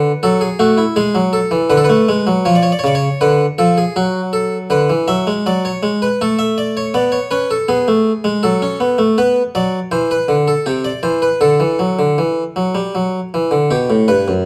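A dark production with light reverb frames this stately, elegant fragment of a classical, baroque-style two-part invention in 3/4 at 80 BPM, played by a solo harpsichord that sounds bright, plucked and full, close-miked and up front, ranging from F#2 to E5 as it moves from B minor into G major at 9.2 s, with harmonies passing through F#m, C#7 and G#dim/B before coming to rest on G at 13.7 s.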